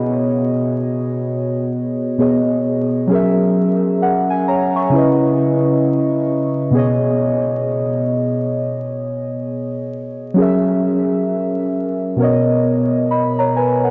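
Soaked in cathedral reverb and vinyl crackle with a dark, dreamy haze, this mellow, nostalgic hip hop fragment features only muted, felt-like synth keys, soft and intimate up front with chorus and analog delay, drifting through a swung progression from B69 to F#7 and C#m9 before resting on Bmaj7 at 12.2 seconds.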